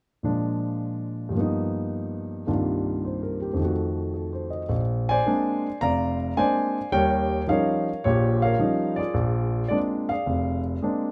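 Solo jazz piano with a playful, sophisticated swing, this short passage from a longer piece features an intimate, up-front grand piano whose natural tone carries audible action noise, spanning from deep bass notes up into the upper register. Over a swung 4/4 feel, the opening phrase moves through dominant and altered harmonies before a new section at 4.7 s settles into richer ninth chords. A moderate large-studio reverb gives the instrument a sense of space.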